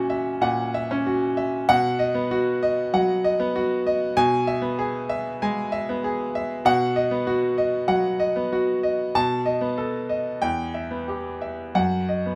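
Classical virtuoso piano study in B major at 96 BPM in a rubato 4/4, this brilliant, sparkling 12.4-second excerpt from a longer piece features a solo grand piano, polished and up front with short sustain, ranging from E2 to A5 in moderate studio reverb as the harmony moves from F#7/A# through B, E/B and B7 to Em before settling on B/F#.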